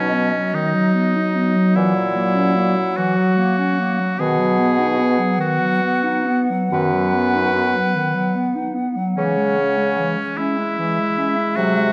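A rubato feel in 12/8 carries this lyrical, serene slow movement for wind quintet, heard as a short cut from a longer piece. A pure, hollow silver flute with vibrato sings the melody above a clear, up-front oboe on the second line, while a mellow, distant clarinet and a dark, smooth-topped French horn fill the accompaniment over a bassoon bass with vibrato and a roomy glow. All five play throughout the 11.9 seconds, set in a wet recital-hall reverb with a dark, warm production.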